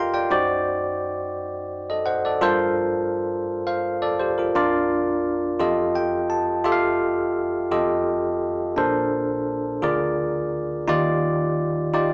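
A barky, bell-like tine electric piano plays alone and up front through this hopeful, soulful gospel excerpt in a straight 6/8, spanning Bb1 to C6 over rich chords such as Gm11, F9 and Bbmaj9, with a brief fill at 5.6 seconds, all set in a moderate large-studio reverb with a live-room, small-speaker character.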